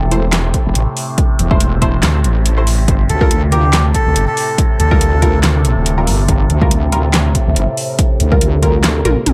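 Dark and meditative, this deep dubstep excerpt moves at 141 BPM in a half-time feel with a light swing on the sixteenths, shifting from A minor to G minor seventh. A heavy, detuned sawtooth wobble bass sits up front with saturated, compressed weight, while a drone built from sawtooth, sine and triangle tones drifts above it with moving overtones, ring-modulated resonance, a slow attack and chorus. Muted chord stabs pluck through a phaser and trail off into dub echo, and an overdriven deep house kit supplies a fat snare, metallic hats, handclaps and toms, joined from 0.5 seconds by a punchy layered electronic kick. Between 3.1 and 5.4 seconds a reedy, breathy melodica, close-miked and dry, floats a short phrase into the echoes. A drum fill at 9.1 seconds closes the passage in a lightly reverberant, echo-heavy mix.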